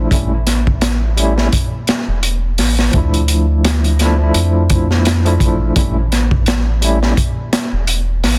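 Brooding and cinematic, this trip hop fragment, cut from a longer piece, rides a swung groove built on a crunchy breakbeat kit with a punchy kick, gritty saturation and a rolled-off top, sitting up front beside a deep, round analog bass with a fast attack and a wave-folded edge. A bright, barky tine electric piano carries the accompaniment through overdrive, tremolo and tape echo, moving from A7 to Dmadd9 and back to A7 before it stops at 7.1 s. Small room ambience and a dense, heavily limited master keep the sound close and compact.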